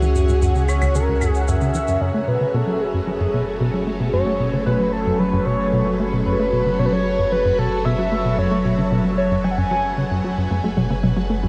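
This mysterious, hypnotic slice of sequencer-driven space music opens on a punchy, driving sequencer-bass riff, a swirling, warbling string machine with phaser, a round sub bass and a shimmering, retro pulse-width lead with tape echo singing the melody, while analog shaker and claves and a very quiet, pulsing gated texture tick beneath them until 2.0 seconds. From there the sub bass fades in under an F#madd9 chord as the lead carries on until 10.2 seconds. A lush, detuned unison pluck arpeggiates from 10.5 seconds, all wrapped in a dark production with long, wet shimmer reverb.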